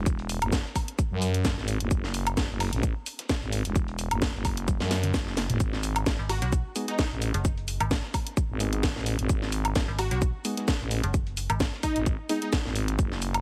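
Heavily compressed, radio-like sound in a digital ambience frames this bouncy, aggressive bass house excerpt, cut from a longer piece and moving at 130 BPM in 4/4 with a light swing on the sixteenths, in G# phrygian. A thick, growling FM bass sits up front from the start with tube saturation and sidechain pumping, driven by a tight, tape-tinged electronic kick and a layered garage kit whose cracking snare, hi-hats, toms and woodblock punch through. Beneath them, a very quiet, gritty sampler-style soul kit adds hi-hat, shaker and a fat snare. After a drum fill at 4.7 seconds the harmony settles on G#m, and a metallic, digital FM bass with overdrive and pumping joins at 6.2 seconds. A punchy, catchy detuned unison lead with lush chorus, digital delay, vibrato and a filter sweep flashes in briefly, then returns from 10.0 seconds. Meanwhile a dark, hollow, wave-folded organ stab with chorus, delay and sidechain pumping adds percussive, full-bodied hits.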